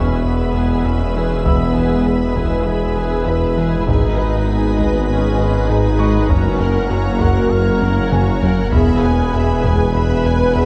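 This cinematic film-score passage blends orchestral and electronic sound at 99 BPM in 4/4, with a tense, futuristic mood and a dark production. A mellow duduk with vibrato, scooped notes and delay carries the melody in the background, joined by a soft-attack violin section also carrying the melody, while a second, distant and lush violin section adds a second line. A viola section fills in the accompaniment, and a vintage-toned French horn section and a pure, bright, organ-like pad with ensemble chorus and built-in reverb hold sustained chords through E, Abm, Gb and back to E. The low end is heavy: a smooth sawtooth synth bass with ring modulation plays a riff over a deep, punchy sine sub bass, joined by a very quiet cello section, a focused double bass section and a present tuba. A very quiet felt-muted upright piano adds an intimate, high texture with audible action noise. A hard-stick taiko ensemble enters at 1.5 seconds, plays a fill from 7.8 seconds and stops at 10.2 seconds, all set in a moderate scoring-stage reverb.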